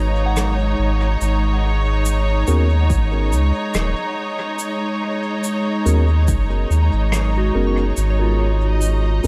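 A light reverb and small room ambience frame this hazy, spacious ambient dub fragment, where a rich, smoothly bowed studio string section holds a sustained G#m11 chord up front over a deep, round sub bass, while a soft, pure FM synth bell arpeggiates in the background through chorus, phaser, dub echo and a filter sweep, distant roomy shaker and rim clicks enter at 0.4 s, mellow tine electric piano stabs with dub echo arrive at 2.5 s, and a tape-warm electronic kick thuds in the background from 2.9 s to 6.5 s.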